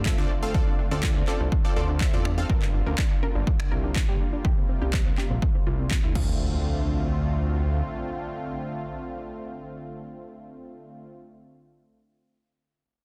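Expansive and dreamy, this progressive house passage, cut from a longer piece, moves at 123 BPM in a straight 4/4 in D minor, cycling through Dm7, Gm7 and C7sus4 before returning to Dm7. A lush, nasal unison pad holds sustained chords with a soft attack and long release, colored by chorus and sidechain pumping, while a fat, detuned sawtooth bass with tube saturation pumps beneath it until 7.8 seconds. A round analog pluck spins arpeggios through cassette tape, chorus and dub echo, with a filter sweep moving across it over the first 6.4 seconds, and a punchy supersaw stab punctuates only the opening moments before dropping out at 2.5 seconds. The overdriven electronic kick sits up front, joined by a house drum kit of crash cymbal, finger snaps and handclaps, both re-recorded in a large room and both stopping at 6.3 seconds, while tape-toned congas tick along in the background. An impact hits at the start and returns in the background from 6.2 seconds, and the whole passage is dry, dense and heavily limited.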